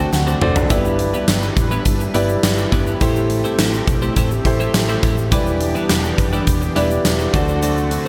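A grand piano fill opens this glossy, nostalgic 1980s-style pop excerpt at 104 BPM in G major, joined at 0.1 seconds by a drum fill from a huge arena kit with a fat snare, punchy kick and gated reverb sitting up front. From 0.7 seconds the piano carries the accompaniment with an open, long-sustaining tone over a dark, round hollow-body picked bass, while a bright, clean twelve-string electric guitar riff glistens through lush chorus, tape echo and shimmer reverb. A shimmering, retro pulse-width pad holds slow-attack chords in the background alongside a grainy egg shaker, as the harmony moves through G6, Am7, Em7 and D7.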